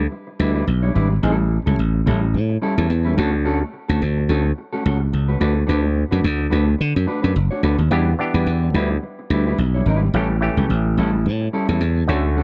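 A dark, warm production with digital ambience frames this glamorous, driving disco excerpt, which sways with a light sixteenth-note swing over Em7, A7, Dmaj7 and Bm7/D changes. A growly, punchy slap bass sits up front with a bright, amped edge, while a mellow electric guitar, clean and fingered, adds accompaniment beside it from the start. At 7.9 seconds a stringy, percussive clav enters, run through an auto-wah envelope filter and a combo amp.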